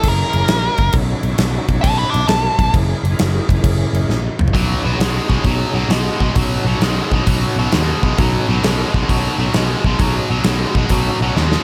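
A swung 4/4 shuffle at 132 BPM drives this raunchy, gritty blues rock and southern rock clip in B mixolydian, moving between F#7 and B7. A huge, punchy arena drum kit with bright cymbals sits up front beside a growly, amped fretless bass, while a percussive tonewheel organ holds sustained chords in the background through slow rotary speaker, chorus vibrato and light overdrive. A dark, nasal lead guitar with a parked wah, overdrive and tape echo opens with a short solo line that ends at 2.7 s; after a drum fill, a tight, double-tracked distorted guitar riff enters up front at 4.5 s for the second section, all in a room with light reverb.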